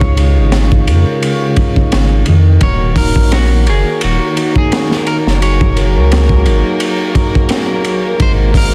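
Brooding and melancholic, this short trip hop excerpt rides a swung groove from a crunchy, saturated breakbeat kit with a punchy kick, high-tuned snare and dark cymbals, sitting up front beside a deep, round dub sub bass. A mellow tonewheel organ turns through a slow rotary speaker with harmonic tremolo, while a thumb-plucked concert harp rings out arpeggios in the background and a bright, picked clean electric guitar carries the melody, both trailed by tape echo. At 2.6 seconds a clear chamber violin section enters with biting, lightly vibrato sustained chords roughened by 12-bit sampler grit, all within a small room and a dense, heavily limited master dusted with vinyl crackle.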